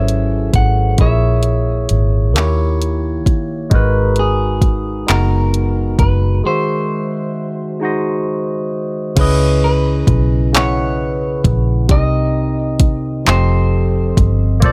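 A clean, picked electric guitar carries the yearning melody over a bright, barky tine electric piano with light overdrive and phaser and a dark, round, foam-muted fingered bass, joined at 0.1 seconds by a tape-warm electronic R&B kit with soft kick, hi-hat, handclaps and crash, in this sultry, slow six-eight R&B piece in C# dorian at 44 BPM that moves through chords like F#m11, D#7b9 and C#m9, reaches a break at 6.4 seconds and shifts to a new section at 9.2 seconds, all in a dry, close-sounding mix.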